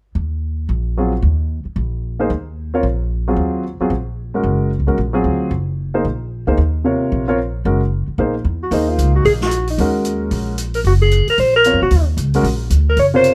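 A dark, punchy alto saxophone takes the solo melody at 8.6 seconds, its subtone and scooped notes sounding both up front and distant and roomy, with an open, natural jazz drum kit of hi-hat and medium-tuned snare joining moments later. This is a fragment of searching, spiritual modal jazz in Eb dorian at a brisk 224 BPM with a swung 4/4 feel, opening at 0.2 seconds on a woody, growly pizzicato upright bass with steel strings, soon joined at 1.0 seconds by a warm, intimate concert grand piano with deep bass and audible action noise, over Ebm9 shifting to Ebm7. Close, detailed microphones with little reverb catch the players intimately, along with a faint mains hum.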